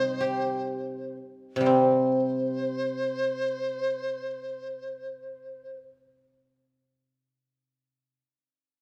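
A large dizi and a guzheng open together in this wistful, graceful fragment of a longer Chinese traditional chamber piece, which unfolds in free time and slows over its first moments. The dizi carries the melody around C5 with a pure, buzzing bamboo tone, shaped by expressive vibrato and a crisp attack, yet it sits at a slight distance. Beneath it, the guzheng supplies accompaniment from C3 up to G4, its fingerpicked strings ringing with a silvery brightness. At 1.7 seconds a new passage begins, and the dizi falls away at 5.8 seconds, leaving the guzheng alone until 8.2 seconds. A moderate recital-hall reverb gives both instruments a gentle, graceful air.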